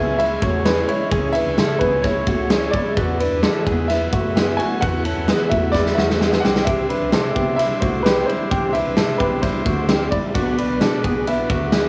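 A straight, steady 4/4 pulse drives this bittersweet, wistful stretch of jangly indie pop, cut from a longer piece and captured as a home recording on cassette in a booth with moderate ambience. A big, natural-sounding rock kit sits up front, with a punchy kick, a medium-tuned snare, hi-hat, and ride cymbals with a bright sheen, plus a fill between 5.7 and 6.7 seconds. A dark, round hollow-body bass anchors the low end. Above it, a clean, compressed direct-recorded electric guitar spins arpeggios through analog chorus, while a full-bodied fingerpicked jumbo acoustic guitar, very quiet in the mix, adds finger squeak. A buzzy vintage combo organ fills the middle, and a woody, worn, slightly detuned upright piano carries the melody with a present, long-sustaining tone. The harmony moves from C#m through Esus2 and Cadd9 to Bm, and the cassette tape coloring on the piano, organ, electric guitar and drums lends those parts a homespun, nostalgic character.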